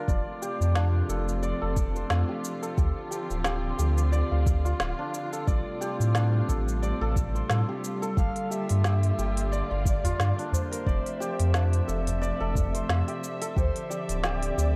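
Organic downtempo at 89 BPM in 4/4 with a light 16th-note swing, this excerpt carries a mystical, warm mood through a dark production with light reverb. A bright, shimmering santur plays ringing hammered arpeggios through a low-pass filter and delay, over sustained chords from a veiled, con sordino string section that sits distant and pumps with sidechain. A round, deep sine sub bass sits up front, and an overdriven soft electronic kick joins an electronic kit of woody snare, smooth hats and shaker, both re-recorded in a small room. At 8.2 seconds a breathy, flute-like synth lead enters with tremolo, subtle chorus and tape echo, and a small acoustic udu adds percussion from 10.0 to 12.7 seconds. The harmony moves from F through Dm7, Am7, Gm7 and Fmaj7 to close on Dm9.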